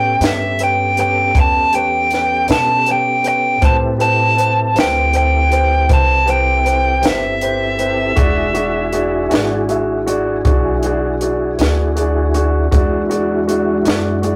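Slow blues in 12/8 at 53 BPM, soulful and gritty, where a dark, overdriven electric lead guitar sings an up-front melody until 10.1 seconds over a clear grand piano with audible action noise, a mellow flute-like tonewheel organ holding chords through a slow rotary speaker and chorus vibrato, a woody pizzicato upright bass, and a dry, compact cocktail kit with a punchy kick and high-tuned snare entering at 0.2 seconds, all moving through A9, Am7 and E9 in a rough rehearsal-room recording with a small wet room and warm saturation.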